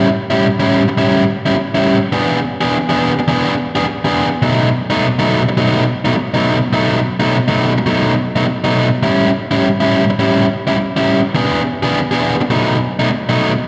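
Rollicking yet laid-back, this blues excerpt swings at 104 BPM in 4/4, carried by a lone overdriven electric guitar that plays from the start until 13.5 seconds. The guitar is picked, up front and warm, with slapback and tape echo, moving through A7, E7 and B7 changes. It sounds like a live gig heard through the venue's PA, set in a moderate club reverb.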